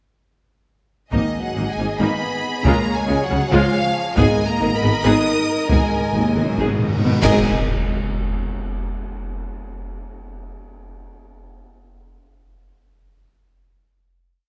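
A wet scoring-stage reverb surrounds this dark, relentless epic orchestral film cue in G# dorian, driving at 275 BPM in eighths through a straight 7/8. A distant, focused studio violin section carries the melody over a lush second violin line, a clear viola section and a bright, very quiet cello section churning out driving ostinatos, while a mellow French horn section holds background chords, and a distant double bass section and roomy tuba double the bass line under heavy-stick taiko strokes. Timpani with hard mallets and a cymbal-and-bass-drum group join at 4.2 s, a timpani fill and a huge reverse cymbal lead to a band accent at 7.2 s, and a dark low impact rings out under the final G#m chord.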